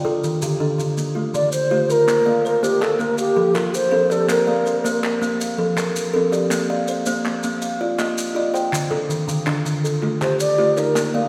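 A straight 12/8 pulse drives this rippling, hypnotic excerpt of southern African traditional music, built on an mbira-style interlocking cycle of two ringing, woody kalimbas playing arpeggios, one with a hollow, thumb-plucked tone and the other thumbnail-plucked with a boxy, solid-board sound, joined almost immediately by grainy, close maracas. At 1.3 seconds a mellow low Native American-style wooden flute comes up front with airy vibrato, a crisp chiff and lifted highs, returning near the end, while human, acoustic group handclaps arrive at 2.1 seconds. A wet church reverb surrounds the whole as the chords move between Dm, Bb and F.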